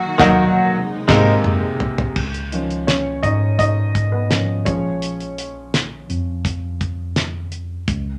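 Warm and anthemic piano-driven pop excerpt in which a woody, slightly detuned upright piano with short sustain takes the lead up front in a club-room reverb, a lush bowed string section holds chords in the background until 2.1 s, a bright, twangy clean electric guitar picks a brief riff ending at 1.3 s, a tine electric piano heard through its built-in speakers carries the bass line, and a dry, damped 70s drum kit with a fat snare and tight kick plays a fill early on.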